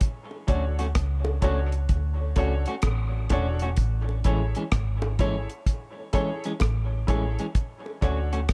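A light reverb and studio ambience give this short dub reggae excerpt a hazy, spacious feel at 64 BPM, with a 16th-note swing and a slow move from Dmaj7 to Amaj7 and back. Up front sit a deep, dry reggae kit of hi-hat, tight kick and rim click with a rolled-off top, and a round, punchy, foam-muted fingered bass that lands at 0.5 seconds. Around them drift dub echoes on a picked, compressed electric guitar at the edge of break-up, woody, slightly detuned upright piano stabs, and tight, high-tuned bongos tucked into the background.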